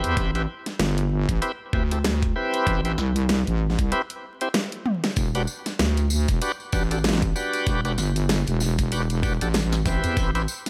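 Funky and swaggering, this glitch hop excerpt in E minor struts at 96 BPM with a swung 16th feel, as a heavy, saturated wobble bass with chorus sits up front beneath shouting, key-clicking tonewheel organ stabs carrying overdrive, slow rotary speaker, 12-bit sampler grit, sidechain pumping and delay, while a dubstep kit with a huge snare and a knocking electronic kick, both in studio reverb, drive it over vinyl crackle through a break at 3.9 seconds and a drum fill, before a jingly tambourine enters in the background at 5.2 seconds as the chords move from Am7 to Em7.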